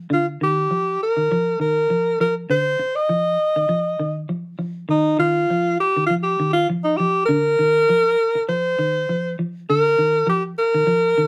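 Afrobeat at 100 BPM with a light sixteenth-note swing, driving and hypnotic, cut from a longer piece played live in one room with light reverb and tuned to A4 = 435 Hz: a dark, clean, fingered semi-hollow guitar plays arpeggios through a phaser beneath a breathy, vibrato-laden alto saxophone that carries a pop-style solo melody up front over chords that keep returning to Ebsus2, with a new section arriving at 9.7 s.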